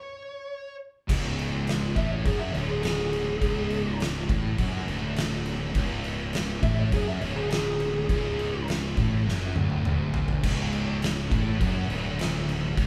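A straight 4/4 groove at 103 BPM drives this heavy, sludgy stoner and doom metal excerpt, where a compressed, up-front fuzz lead guitar opens alone before the oversized low-tuned drum kit with its fat snare and dark cymbals, a growly overdriven fingered bass, a double-tracked overdriven guitar and two very quiet thick fuzz guitars crash in at 1.1 s on a C#5 power chord, with a barely audible shimmering string machine of violins beneath, the lead soloing until it drops out at 8.6 s and a drum fill at 9.3 s ushering in the final stretch, all captured live in one room with a moderate large studio reverb.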